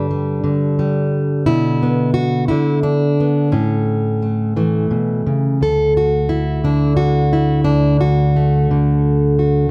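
Pastoral and peaceful, this short folk passage features a single fingerpicked steel-string acoustic guitar, a full-bodied jumbo plugged in and placed up front, moving at an unhurried 88 BPM in 3/4 in D major, tuned slightly low to A4 = 435 Hz. Its chords pass from G through Bm and A before settling on D at 5.6 seconds, where a second section begins. Close, detailed microphones and a light reverb give the guitar an intimate presence in this fragment of a longer piece.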